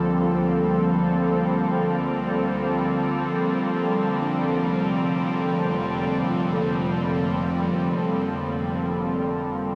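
Weightless and warm, this ambient fragment floats in free time, tuned slightly below standard pitch at A4 = 439 Hz, and runs just under 10 seconds. An airy, breathy pad sits up front holding sustained chords with a slow attack, long release and a chorus shimmer, moving from Dm7 to F69 at 3.4 seconds. Behind it, a calm organ-like drone in the background hums in detuned unison, softened by its own ensemble chorus and built-in reverb. A bright symphonic double bass section, bowed, lush and focused, with vibrato, fades in gradually across the whole passage to anchor the low end. A very quiet handpan traces meditative arpeggios with a ringing, fingertip-struck steel tone and a boxy small-room character, all set inside a wet concert-hall reverb that lingers for about 2.3 seconds.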